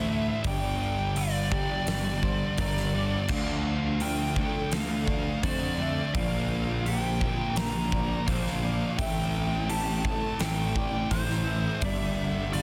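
Dreamy and hazy, this fragment of shoegaze-tinged dream pop rock in a straight 4/4 rests on a thick, dark fuzz guitar riff placed up front, joined by a punchy, overdriven fuzz bass. A nasal lead guitar with a parked wah carries the melody with overdrive and slapback echo, while a bright, twangy electric guitar through a small old amp plays lo-fi, slightly broken-up arpeggios in the background, coloured by ensemble chorus and its own slapback. A huge arena drum kit arrives at 0.4 s with a fat snare, boomy kick, hi-hat and crash cymbal ringing in a big room. At 3.3 s a crunchy overdriven guitar adds a very quiet second riff. The harmony moves from Gm through Dm7, Bb6 and Am7 before returning to Gm, and the whole is pressed into a dense, heavily limited modern master.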